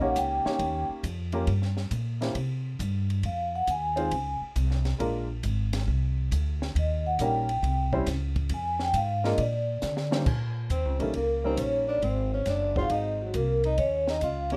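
A rough home demo with light reverb gives this short cut from a longer piece of small-group swing and bop a close, informal sound, playful and relaxed at 136 BPM in Eb mixolydian. A vibraphone played with soft mallets carries the melody from the start, its ringing, metallic tone shaded by a fast motor vibrato and a boxy small-room quality, and it takes a solo through the first 10.3 seconds. Beneath it, a woody, slightly detuned upright piano comps with short sustain, while a pizzicato upright bass on steel strings sits up front with a thumpy low end. A compact cocktail kit stays low in the mix, dark and rolled-off on top, with a high-tuned snare, punchy kick, hi-hat, ride and crash, and it plays a fill just before the second section begins at 10.3 seconds. At 10.7 seconds a growling tenor saxophone enters quietly with a breathy, raspy subtone and scooped notes, adding a second line as the harmony moves from Eb7 to Ab7 and back.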